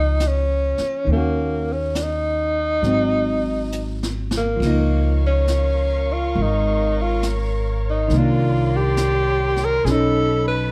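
A melancholic, wistful jazz ballad at 68 BPM opens with an up-front tenor saxophone singing the melody with warm vibrato and scooped notes, over a woody pizzicato upright bass and a clean, fingered hollow-body guitar accompanying in dark tones, with a brushed drum kit of boomy kick and shadowy cymbals joining at 0.2 seconds. After a brush drum fill from 3.7 seconds, a veiled, con sordino string section enters at 4.6 seconds with soft-attack sustained chords as the harmony settles on Db69. Light reverb frames this unhurried, gently swung passage, cut from a longer piece.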